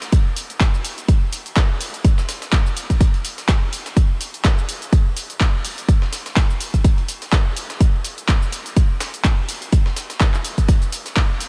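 House drums drive this short, energetic and soulful excerpt, cut from a longer piece and set on a swung sixteenth-note groove in four. An electronic kick sits up front, layered, punchy and tape-warm, running from 0.1 to 11.3 seconds. Around it, an analog drum machine supplies handclaps, hi-hat and shaker with a tape-warm character. Far beneath, a very quiet sampler-style breakbeat kit adds hi-hat and a high-tuned, gritty, compressed snare. Every part was re-recorded in a small room, and the overall sound stays dry, with little reverb.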